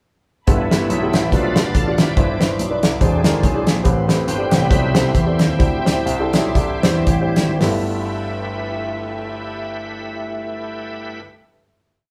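A bright, shouting tonewheel organ leads this short, soulful and uplifting uptempo gospel piece in a swung 4/4, its lightly overdriven held chords turning through a slow rotary speaker with chorus vibrato as it solos over a breakdown from the start. Beneath it, a woody upright piano plays rhythmic, closely voiced chords with long sustain, while a grand piano handles the bass, its walking and running gospel line full of chromatic approach notes and carrying an intimate sound with audible action noise. An acoustic country drum kit sits up front with a tight kick, medium-tuned snare and hi-hat, driving a two-beat praise groove. A very quiet, distant string section adds a warm, reedy, gut-string pad in period style high above the band. The band slows down from 3.9 seconds, the drums drop out at 7.8 seconds, and the pianos, organ and strings sustain a final chord in a moderately reverberant room, with the feel of a group playing live together.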